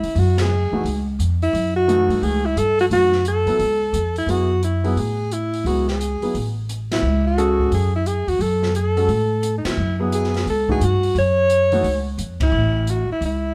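Modal jazz with a spiritual, cool mood swings at 175 BPM in F# dorian over a lingering F#m9, as a breathy alto saxophone with light vibrato, subtone and scooped notes leads up front above a woody, thumpy pizzicato upright bass on gut strings, a dark, boomy drum kit with dark cymbals and a high-tuned snare, and an intimate baby grand piano with audible action noise entering at 0.7 seconds, the band hitting accents together at 0.3, 6.9, 9.6 and 12.4 seconds in a live room with light reverb, in what sounds like a section cut from a longer piece.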